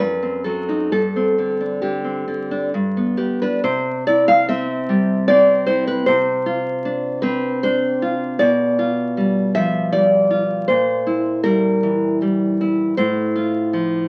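Crackling with the surface noise of a very old 78 rpm record and bathed in a moderate studio reverb, this nostalgic, tender romantic excerpt for solo classical guitar in C major and 3/4 drifts in rubato between 64 and 81 BPM, the up-front, fingerpicked nylon strings showing audible finger squeaks as harmonies move from F#dim7 and Gsus4 into a second section beginning at 3.6 seconds that passes through Dm7/C, G7/B and C7/Bb before arriving at F/A.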